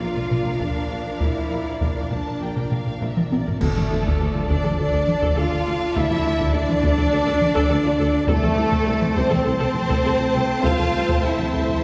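A compressed, saturated taiko ensemble struck with heavy sticks drives this relentless, epic orchestral film-score excerpt, entering at 0.2 seconds at a straight 102 BPM in D minor. Above it, a lush violin section sings the melody with vibrato while a second, very quiet violin line plays beneath. The violas accompany, the cellos support the bass, and a close, expressive string section holds sustained chords, all in the background. A dark, distant French horn section sustains chords over a rich bowed bass of double basses and a mellow, roomy tuba, moving from Bb to D minor and then A minor over C. Bright clash cymbals, a cymbal swell and concert bass drum add weight early on, and after a drum fill a band accent at 3.6 seconds marks the next section, where a pure, straight-toned flute ensemble joins very quietly on a second line. The whole orchestra sits further back in a wet concert hall, giving it a grand, reverberant scale.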